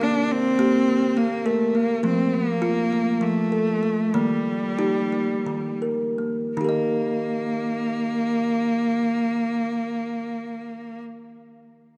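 Bathed in a wet church reverb, this dreamy, gentle excerpt of meditative world music in Eb lydian and 7/8 moves at 155-208 BPM counted in eighths, slowing from 2.0 to 6.6 seconds, as an up-front kalimba rings out woody, thumbnail-plucked arpeggios over Bbsus2, F and Eb while a single cello carries an intense, bright, vibrato-laden bowed melody.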